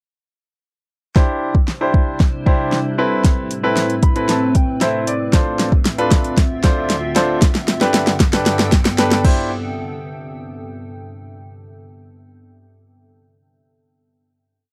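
Euphoric and carefree, this short dance-pop piece is one long build-up from 1.2 seconds, driven by an overdriven electronic R&B drum kit with a fat snare, metallic hats and a syncopated pop beat that plays as a fill throughout. A clear, polished baby grand piano adds syncopated, closely voiced chord stabs, with a brief fill from 3.8 seconds. Beneath it, a glassy FM pad with ensemble chorus and its own reverb holds ethereal sustained chords, both parts carrying sidechain pumping, before the build lands on a final hit at 9.5 seconds in a dry, close 1970s-style studio sound with light reverb.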